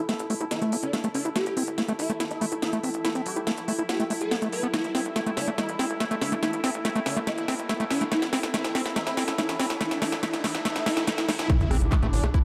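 Dark, lush hall reverb surrounds this driving, hypnotic psychedelic trance excerpt at 142 BPM: in a build-up, a squelchy, gritty acid bass riff with a filter sweep sits above a very quiet, punchy sequencer bass, while a techno kit of cracking snare, smooth hats, handclaps and rim click plays a drum fill, and a swarming detuned rave lead, a pulsing gated texture of sustained chords and a nostalgic, warbling tape-like pad sit in the background with sidechain pumping, as faint riser and impact effects enter at 0.7 s and an up-front, tight electronic kick arrives with the impact at 11.5 s.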